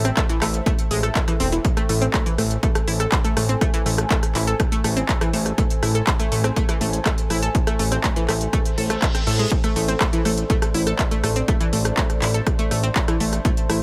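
A fat, thick sawtooth bass sits up front in this hypnotic, dramatic melodic techno excerpt at 122 BPM in A harmonic minor, its detuned tone shaped by a filter sweep, a fast attack and a decaying body, and pumped by sidechain compression under a steady Am harmony. A punchy electronic kick, tape-warm and re-recorded in a small room, enters at 0.2 seconds and holds the straight 4/4 pulse up front, while a layered techno kit adds handclaps, smooth hi-hats and rim clicks. Over this, a bright analog pluck spins arpeggios from sawtooth, square, triangle and noise layers with ring modulation, a filter sweep, and a fast attack with short decay, treated with chorus, delay and sidechain pumping. In the background, a deep, moody ambient pad holds sustained chords built from detuned unison sawtooth, sine and a sub octave, wave-folded and ring-modulated, with a slow attack, long release, chorus, built-in reverb and its own pumping. 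A reverse cymbal sounds briefly from 8.8 to 9.5 seconds, and the overall mix is dry and close.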